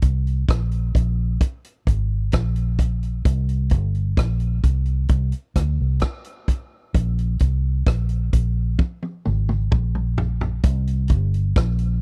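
A dry, close recording with a 1970s studio sound carries this heavy, deep dub reggae excerpt at a slow 65 BPM in a straight 4/4. A vintage drum kit sits up front with an acoustic, small-room character, its punchy kick joined by hi-hat, rim clicks and toms, while a muted, fingered electric bass, dark and round with an amped, foam-muted tone, holds the low end from G1 to D2 throughout. A drum fill from 8.8 to 10.6 seconds leads into a new section that runs to the end at 12.0 seconds.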